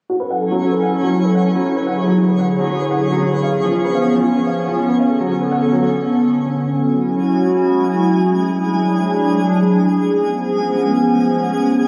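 A hollow, flute-like pad sits up front in this glitchy, intricate IDM excerpt, holding sustained chords from 0.3 s with chorus and a gritty vintage 12-bit sampler edge. A felt-muted upright piano, dark and intimate, plays arpeggios through a filter sweep and dub echo until 5.9 s, while a twinkling granular texture with an octave-up shimmer and its own reverb glints more faintly beneath. Captured on a phone in the room, with club reverb and a huge ambient tail, the music moves through F#m7, E9, C#7 and Bm9 before an F#5 chord opens the second section at 6.8 s.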